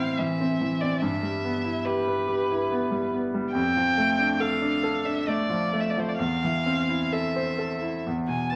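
A solo violin and a grand piano begin together, opening a short excerpt of romantic classical music in A minor that feels elegiac and yearning. The pace is slow, between 64 and 72 BPM in 3/4, and the rubato lets the phrasing breathe freely. The bowed violin carries the melody between B4 and A5, its rich tone shaped by vibrato, soft attacks and expressive portamento slides. The bright concert grand supports it from E2 up to C5 with a brilliant, smooth sound, deep bass and a vintage character, and both instruments sit up front. The harmony moves from A minor through E minor over G and D minor over F to A minor over E, landing on a bare E chord at 8.1 seconds. A reverberant stone room and a layer of vinyl crackle give the recording an aged, intimate atmosphere.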